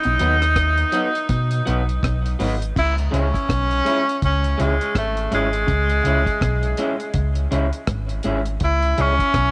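Roots reggae with a hypnotic, serious mood, cut from a longer piece and set in a small room with light reverb, where a distant, roomy tenor saxophone with light vibrato and tape echo carries the melody up front over a round, sine-like sub bass. A deep, dry drum kit with a tight kick, rim click, hi-hat and crash keeps a dark, rolled-off groove, while a clean, fingered electric guitar with phaser sits compressed in the background and a twangy, slightly broken-up guitar through a small old amp adds bright picked accompaniment with tape echo. The harmony moves from B to C#m at 2.8 s as a new section begins.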